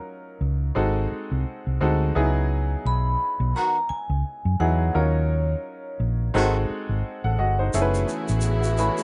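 A round, dark hollow-body electric bass sits up front in this short cinematic excerpt of lush 1970s-style soul, moving at a smooth 86 BPM in 4/4 with a light sixteenth-note swing. Clear grand piano chords with short sustain carry the accompaniment, while a delicate, slightly out-of-tune celesta adds sweet, bell-like texture in the background. A ringing vibraphone with a slow motor vibrato takes the melody from 2.9 seconds, and a jazz-style horn section adds clear stabs shortly after. The harmony drifts through minor ninth, altered dominant and eleventh chords, and at 7.7 seconds a new section arrives on an F#m11 chord, where an expressive studio string section with vibrato and portamento and a grainy, vintage tube shaker join. The sound is dry and rough, like a home demo, with a dulled top end.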